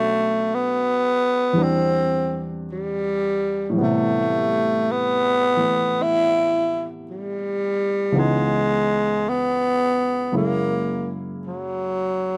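A growling tenor saxophone carries the melody up front, its breathy subtone tinged with a raspy, gritty edge, soft attacks and scooped notes in a clear jazz voice. This is a short, intimate jazz fragment cut from a longer piece, moving at a slow 55 BPM in 4/4 with a swung eighth-note feel and a tender mood. A warm baby grand piano accompanies throughout the full 12.4 seconds, sounding present and polished beneath the horn, reaching down into the low register. The harmony drifts through rich extended chords, from Bm9 and Cadd9/E to a long stretch on Am9, then C#m9 at 8.1 seconds and F#9 at 10.3 seconds. Recorded outdoors, the sound is dry, with little reverb and the saxophone sitting clearly ahead of the piano.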